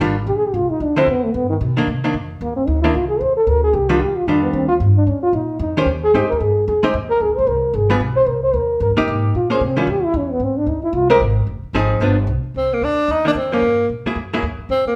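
Heard in a moderately reverberant large room with the band playing live together, this moody, cool fragment of small-group swing and bop opens with a dark, breathy trombone soloing from 0.3 s over clean, compressed hollow-body archtop guitar chords and a woody, growly pizzicato upright bass, before a whispered, intimate tenor saxophone with light vibrato takes the melody at 12.6 s.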